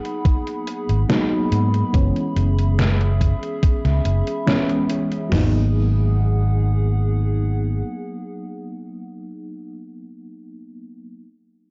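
Vaporwave at 71 BPM in G# minor, woozy and nostalgic, with a dark cassette-tape haze over a short section cut from a longer piece. A mellow, round FM electric piano with tremolo, chorus and delay carries the accompaniment over G#m7 and F#9sus4, while a detuned, warbling tape-like pad holds slow-attack chords through phaser and its own reverb until 9.5 seconds. A gated 80s digital drum machine with a thumpy kick, overdriven grit and big gated snares drops out around 5.5 seconds, and a dark, amped fingered bass sits up front until 7.8 seconds, leaving the electric piano to ring on alone until 11.2 seconds.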